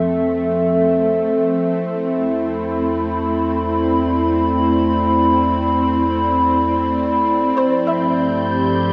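A lush, wet hall reverb and the soft grain of cassette tape frame this luminous, weightless ambient passage in free time, cut from a longer piece. Up front, a warbling, nostalgic pad built from detuned square and triangle tones holds slow-blooming chords through chorus and its own reverb, moving from Fmaj7 to Cmaj9/E. Beneath it, a round, deep analog bass fades in quietly, while a tense, nasal bowed-like drone with vibrato sustains in the middle register. At 7.6 seconds the harmony turns to G7sus4 and a soft, gentle pluck enters with brief decaying arpeggios under ensemble chorus. Just after, at 7.8 seconds, a faint, breathy wind-like texture drifts in high above on a single tuned note.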